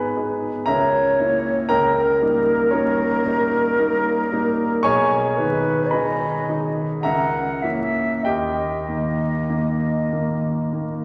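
Through vinyl crackle, a faint mains hum and the wet reverb of a concert hall comes this solemn, melancholic romantic classical duo, cut from a longer piece: a hollow, airy silver flute sings the melody with vibrato and tongued notes over an up-front, warm grand piano accompaniment, moving in a rubato three-beat lilt through minor harmonies that darken with diminished and seventh chords.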